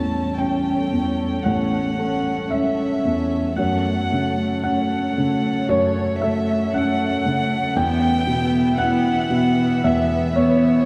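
A soft, felt-muted upright piano sits up front in this longing, reflective neoclassical excerpt, playing a mellow, intimate accompaniment in a rubato 4/4 while a chamber violin section carries the melody with light vibrato, a single dark cello plays a second line with an airy bow, and a studio string section holds sustained chords in the background, the whole ensemble set in a vast, echoing cathedral space.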